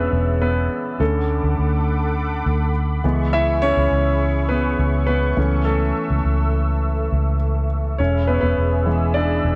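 Pop in a straight 4/4, this short excerpt has an uplifting, hopeful mood. A clear, intimate grand piano takes the lead throughout, its natural tone carrying long sustain and audible action noise as it plays across the middle of the keyboard. Beneath it, a vintage muted fingered electric bass sits up front with a dark, round, punchy, foam-muted sound. A smooth analog pad built from detuned sawtooth tones holds sustained chords in a higher register, its slow attack and moving notch colored by chorus, set well behind the other parts. The harmony moves from E through Bm7/D, C#m7 and A/C# before settling back on E at 8.0 seconds, and the whole passage has the dry, close feel of a 1970s studio recording with little reverb.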